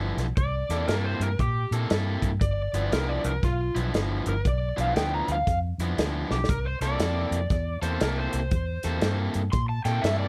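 A swung 4/4 shuffle at 118 BPM drives this gritty, swaggering electric blues, anchored by a dark, round, punchy fingered bass with a foam-muted vintage tone and a distant, roomy soul drum kit with a tight kick and rolled-off top that drops a fill at 6.2 seconds. Two overdriven guitars share the top: a picked semi-hollow carries the riff over C13 and G6 chords, while a bright, up-front slide guitar enters at 0.4 seconds to solo as the second line, all set in light reverb.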